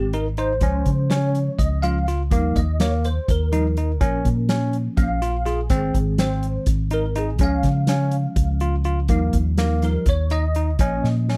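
Progressive instrumental band music in an uneven 7/8 meter, this driving, intricate passage is cut from a longer piece and moves at 248 BPM counted in eighths with a straight feel in Ab major. A bell-like, clean tine electric piano carries the accompaniment with an ensemble chorus, while a second, barky tine electric piano spins arpeggios in a narrow middle range, both sounding bright and direct. Underneath, a hollow-body short-scale electric bass, fingered and amped, gives a dark, round foundation placed up front. A soft-mallet drum kit of hi-hat, boomy kick and medium-tuned snare sits up front too, with a big-room acoustic character, and closes with a fill from 11.0 to 11.4 seconds. The harmony cycles through Ab, Db, Ebadd9 and Bbm twice, and the whole take has the dry, close sound of a 1970s studio recording with little reverb.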